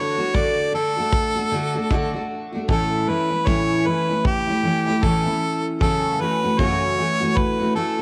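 A clear harmonica and a picked steel-string acoustic guitar open this sunny, easy-going acoustic pop excerpt together, joined by a kick drum at 0.3 seconds. The harmonica carries the melody up front, its smooth top and light vibrato giving a clear pop-style solo voice. Underneath, the double-tracked dreadnought guitar sounds full-bodied and close, supplying the accompaniment as the harmony moves from D to A and then to F#m7 at 5.8 seconds. The punchy kick sits mid-forward with a rolled-off top, keeping a relaxed 77 BPM pulse in 4/4 with a gentle swing on the sixteenths. A light reverb and small room ambience surround the parts, keeping the short D major passage intimate and unhurried.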